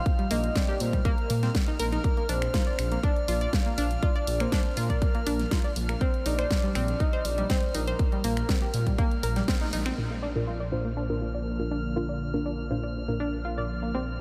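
A soft, round synth lead carrying a sub octave and a glassy, drifting high texture open this euphoric, expansive progressive house cut at 121 BPM in Bb major. They are soon joined by a punchy, up-front kick, a pop kit with a fat snare, finger snaps and filtered hats, a detuned analog pluck playing arpeggios, and a deep, rumbling saw bass, with all the pitched parts pumping under sidechain. After a band accent at 9.5 seconds, the lead and drums drop away and the second section begins at 10.0 seconds: mellow chord stabs with tape echo take over, joined at 10.8 seconds by a lush, thick unison pad, while the pluck's filter sweeps. The dreamy mix is soaked in huge ambient reverb, and the excerpt is cut from a longer piece.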